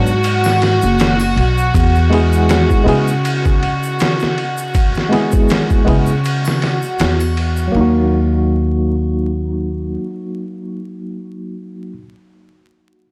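A swung sixteenth-note feel in 4/4 drives this hypnotic, melancholic trip hop excerpt. It rests on a sampler-style drum kit that sounds pitched down, muffled and overdriven, with a thumpy kick, a medium-tuned snare and ride cymbal set up front in studio reverb. An acoustic egg shaker and triangle sit in the background of a live room, while a woody, dark pizzicato upright bass on gut strings anchors the low end. A barky, worn tine electric piano, slightly out of tune and heard through its built-in speakers, plays the accompaniment with tremolo, tape echo and a low-pass filter sweep over the opening, moving from B5 to E before settling on Ebm. A studio violin section holds soft-attack, sul tasto chords with a floating, pure quality until about 7.8 seconds; the bass carries on to 10.0 seconds, after which the electric piano plays alone until 12.1 seconds, all within a dry, gritty hardware sound marked by small room ambience and vinyl crackle.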